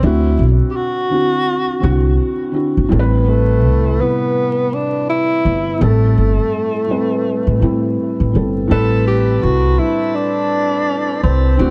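A mellow tenor saxophone leads this melancholic, nostalgic hip hop excerpt, its subtone, vibrato and scooped notes colored by tape echo, over a felt-muted upright piano with audible action noise and a woody, thumpy pizzicato upright bass on gut strings, all up front and swinging gently. At 8.7 s a quiet pipe organ principal chorus adds full, baroque-voiced sustained chords above them. The dark production sits in a small room with light reverb and vinyl crackle.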